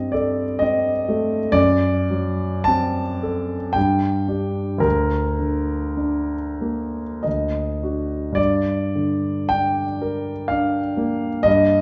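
A concert grand piano, heard up front with an intimate, natural tone, carries this brief romantic nocturne entirely by itself, playing from 0.0 to 11.8 seconds. Its deep bass and long sustain give the notes a lingering weight, and the noise of the instrument's action stays audible beneath the music. The mood is mournful and wistful, unfolding in a slow triple metre with a freely flexing rubato. The harmony moves through shadowed, unsettled chords before settling onto a minor-key resting point near the close, across a span reaching from D2 up to A5. A moderate recital hall reverb surrounds the piano, and the dark, warm production suits this short passage cut from a longer piece.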